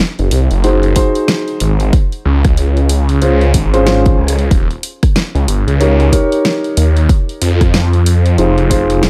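Glitch hop at 93 BPM in 4/4, this funky, playful excerpt swings its sixteenths and runs through a chord sequence of Ab7, Dbmaj7, Eb7 and Fm7. A phased, detuned saw bass sits up front from 0.2 seconds, thick and saturated with a swirling quality, ranging from Eb1 to F2. A pop drum kit enters alongside it with hi-hat, rim click and a fat snare, and an electronic kick drum, punchy and layered, joins at 1.0 seconds. A dark concert grand piano plays stabs between Db4 and Db5 from 0.6 seconds, its mellow, boxy tone shaped by sidechain pumping and a digital delay. The sound is placed in a digital ambience, and the clip is cut from a longer piece.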